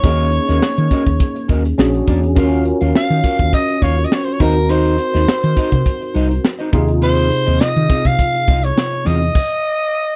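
From the first beat, a polished, slick 1980s jazz-funk pop excerpt at 103 BPM with a light sixteenth-note swing sets a raspy, gritty soprano saxophone melody with slapback echo over a worn, slightly out-of-tune tine electric piano with overdrive and ensemble chorus, a dark, clean fingered electric guitar riff with subtle chorus, a round, woody fretless bass and a crisp, punchy fusion kit with a high-tuned snare, moving through chords like Ebm9 and Cm7b5 in a dry, urban mix until the band stops near 9.4 seconds and the sax carries on to 10.2 seconds.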